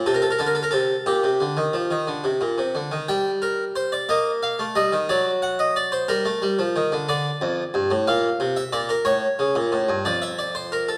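Stately yet lively, this brief passage from a longer classical piece is a baroque-style two-part invention in G minor, moving in a straight 6/8 at 60 dotted-quarter beats per minute and tuned to A4 = 437 Hz. A solo Flemish-style harpsichord with two sets of strings carries both voices, its plucked, full tone sitting up front and mid-forward across a range from F2 to G5. A wet recital-hall reverb surrounds the instrument, and at 3.1 seconds the music moves into a new section whose harmonies pass from G minor through E-flat, D and D minor toward a close on D minor.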